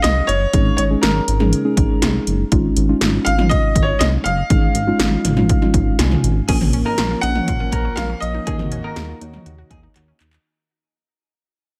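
Synth-pop with a driving, nocturnal mood, this excerpt sets a clear baby grand piano melody with delay over muted, warbling synth keys, a glossy chorused synth bass and punchy 80s electronic drums with gated reverb on snare and toms, then at 6.5 s, as the music begins to fade out, a slightly broken-up electric guitar with delay joins, along with a smooth analog pad and a lush detuned unison pluck in the background, before a closing drum fill at 10.0 s.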